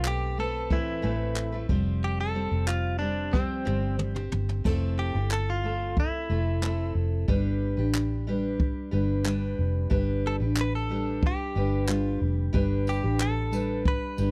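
A dry, close recording with a 1970s studio character frames this heartfelt, easy-going acoustic pop excerpt at 91 BPM in 4/4, moving through Amadd9, Fsus2, Fmaj7 and G. A bright, twangy clean electric guitar carries the melody up front over a picked steel-string acoustic guitar with an auditorium-like body, while a dark, round, foam-muted vintage electric bass holds the low end. A jazz kit played with brushes, with dark cymbals, a boomy kick, handclaps, tambourine and toms, adds a fill from 3.3 to 4.7 seconds that leads into the second section.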